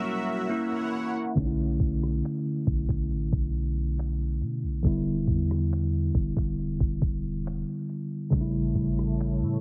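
A bell-like tine electric piano opens this late-night, longing contemporary R&B piece at 69 BPM in B minor with a brief solo break over a lush, detuned sawtooth pad treated with chorus, phaser and sidechain pumping, before a deep, boomy 808-style bass and a dusty, gritty sampler-style drum kit with thumpy kick, finger snaps, rim click, hi-hat and crash cymbal enter at 1.4 seconds under chords moving from Bm11 through Em7 to A7, the pad returning at 8.7 seconds, the mix set in a heavily compressed, low-pass-filtered radio-like sound.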